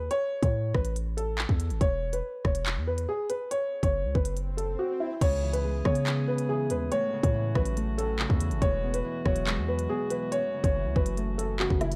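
Drill hip hop in C# minor at 141 BPM with a half-time feel, tense and dark, cut from a longer piece. A woody, slightly detuned upright piano carries the melody up front over a punchy, heavy 808-style bass with a fast attack and a drill kit of hard-clipped kick, crisp hats, handclaps, rim clicks and crash, all in a dry, gritty small room. A background electronic swell rises from 4.0 seconds, the drums drop out briefly at 4.8 seconds, and at 5.2 seconds a thumb-plucked, ringing Celtic harp and a softly vibrato-tinged woodwind section join over chords moving from C#m7 through A6 and Eadd9 to F#m7.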